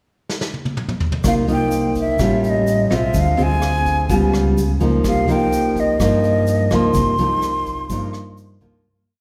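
Bathed in a wet church reverb, this short, wistful and intimate bossa nova in C minor moves at 126 BPM, opening with a brush fill on a dark, smooth vintage drum kit before guitar, bass and shaker enter at 1.2 seconds. Up front, a fingerpicked nylon-string guitar plays thumb bass and syncopated plucked chords with audible finger squeak, while a round, punchy fingered electric bass plays dotted root-and-fifth lines and a grainy egg shaker sits in the background. Entering just after at 1.3 seconds, a breathy jazz flute with vibrato and a soft attack carries a motif-based melody over the chords, and the piece fades out from 6.9 seconds.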